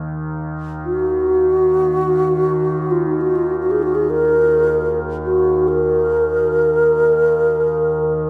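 A mellow, hollow wooden-headed alto flute sits up front, its pure tone carrying vibrato and tongued notes from 0.9 seconds through a diffuse ambient delay. Beneath it, an overtone-sweeping drone of sawtooth and sine colour holds sustained, resonant tones with moving overtones, chorus and its own reverb. This free-time, haunting piece of world meditation music is cut from a longer work, and it unfolds in a vast, echoing cathedral reverb with a 6.3-second decay.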